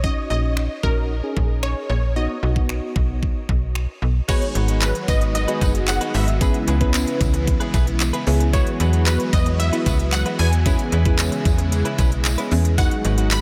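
Lightly reverberant, this energetic, confident dance-pop excerpt sets a bright, detuned unison pluck melody over soft, round electric-piano-like synth keys with chorus and phaser, a snappy, metallic slap-like FM bass and an up-front pop drum kit with knocking kick, crisp hats, snaps and handclaps, before a full-bodied filtered supersaw swell, a picked, clean direct-recorded electric guitar riff and a jingly background tambourine enter at 4.3 seconds.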